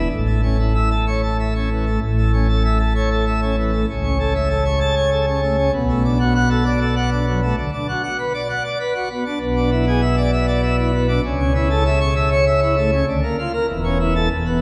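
A solo pipe organ on full plenum, its mixtures giving a brilliant, romantically voiced sound placed up front, carries this majestic classical toccata cut from a longer piece. It moves at 98 BPM in a straight 3/4, in A major with tuning set to A4 = 437 Hz, and its range spans from a deep E1 up to A5. The harmony opens on A, and after a brief opening statement a new section begins at 2.0 s, moving through A/C# to Bm7, Bm/D and E7/B before returning to A/C#. A striking Bb/D chord at 13.1 s adds a moment of color before the passage settles on A/E. A church acoustic with a 3.4-second reverb tail surrounds the instrument, lending the sound a grand, resonant spaciousness.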